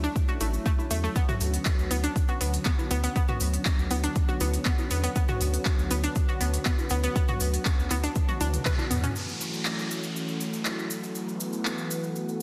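Expansive and dreamy, this progressive house excerpt moves at 120 BPM in a straight 4/4 in B minor, cut from a longer piece. A lush, detuned unison pad holds sustained chords from Dmaj7 to Bmadd9/D with chorus, vintage 12-bit sampler grit and sidechain pumping, while a filter sweep runs across the synth pad through the opening 9.2 seconds. Above it, a bright, detuned analog pluck plays chorused arpeggios through tape echo, and a round, nasal analog bass pumps underneath. An overdriven, up-front electronic kick anchors a crisp big-room kit of handclaps, hi-hat and toms, with electronic congas and toms tucked in the background and a grainy cabasa adding shimmer. A drum fill and band accent close the first passage. The kick drops out at around 8.8 seconds and the bass and pluck stop at around 9.1 seconds, while the pad, cabasa, big-room kit and a downlifter drift over F#m7 in a light reverb and a dense, heavily limited master.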